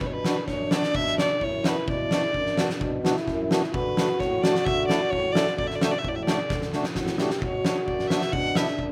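A straight 4/4 pulse at 130 BPM drives this bittersweet, soulful klezmer piece in B minor, moving from Bm to D and back to Bm. An oversized, low-tuned drum kit sits up front, its boomy kick and fat, gritty snare pumping with a big-room sound before a fill at 6.5 seconds. A gut-string violin, bowed by one player in period style, carries the melody, while a dark, veiled trombone in a bucket mute plays a second line with vibrato and scooped notes, and a mellow, round, close-miked accordion supplies accompaniment, all three touched by slapback echo in an otherwise dry mix.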